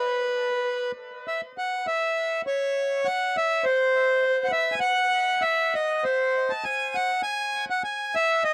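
In a loose, rubato 2/4 at around 100 BPM, this bouncy, festive alpine folk fragment, cut from a longer piece, features a lone accordion in E major, tuned to A4 = 437 Hz. The accordion sits up front with a reedy, dark tone, playing between B4 and A5 with a touch of tape echo, and moves into a new section at 1.2 seconds that runs to the end at 8.5 seconds. The sound is dry and close, like a 1970s studio recording, with light reverb.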